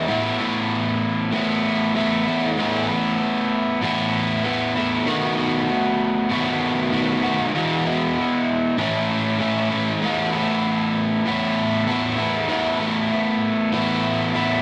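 The rhythm sits in a straight, steady 4/4, giving this short rock excerpt an unhurried, even footing. A single crunchy, overdriven electric guitar carries everything on its own from 0.0 to 14.6 seconds, picked and double-tracked so it sounds thick and placed up front. It moves through Asus2, B7, E and A before circling back to Asus2 at 10.0 seconds, where the opening passage begins again, and it ranges from a low E2 up to F#4. The mood is wistful and dreamy, with the suspended chord lending a hazy, unresolved quality. A wet studio reverb surrounds the guitar, while the rough rehearsal-room sound and tube saturation add a gritty, lived-in edge. Being cut from a longer piece, it feels like a brief glimpse into a larger song.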